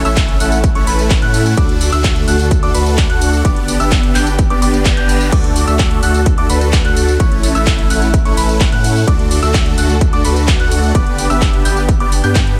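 Festival progressive house at 128 BPM in D major, this anthemic, triumphant excerpt cycles through A, D and G chords as a huge, detuned supersaw riff with phaser and delay rides over a deep, saturated sine sub bass, all pumping under sidechain compression. A punchy, overdriven electronic kick anchors a house kit of crash, handclaps, metallic hi-hats and tambourine, while a natural-toned grand piano plays high arpeggios with delay and a dark, woody bowed string section holds sustained chords in the background. A reverse cymbal sweeps in at 4.6 seconds, and the whole mix sits in a digital ambience.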